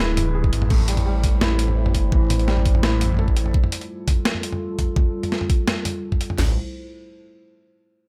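Lightly reverberant and up front, this tense, dark half-time drum and bass excerpt pairs a knocking, layered electronic kit with a gritty, pitched-down sampler-style kit and its high-tuned snare, under a swirling, thick phased saw bass that drops out at 3.5 seconds, a soft felt-muted upright piano whose arpeggios, with audible action noise, dissolve into diffuse delay by 3.6 seconds, and a deep, moody analog pad of sustained chords with lush chorus and sidechain pumping.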